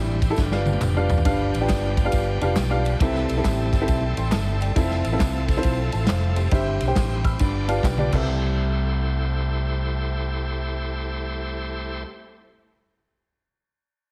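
A woody upright piano, a shouting tonewheel organ with overdrive and a fast rotary speaker, and a round, up-front fingered electric bass open this jubilant, uplifting swung gospel excerpt, joined at 0.2 seconds by a punchy small-room acoustic drum kit with fills and by background tambourine and handclaps, until the drums drop out at 8.2 seconds and a piano fill over G7 and C6 harmonies carries into a closing passage, all set in light reverb with a heavily compressed radio sound.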